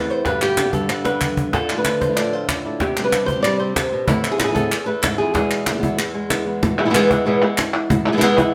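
A straight 4/4 flamenco groove drives this fiery, mournful passage: a woody cajon with faint snares and crisp, saturated palmas hand claps enter at 0.3 s, and the cajon adds a short fill at 1.1 s. Up front, a fingerpicked flamenco guitar with plate reverb carries the melody, while a darker second guitar punctuates with stabs over a progression of G, Dmadd9, Csus2, Amadd9 and E. A wet studio reverb surrounds the performance, which moves into a new section at 6.6 s before the recording cuts off.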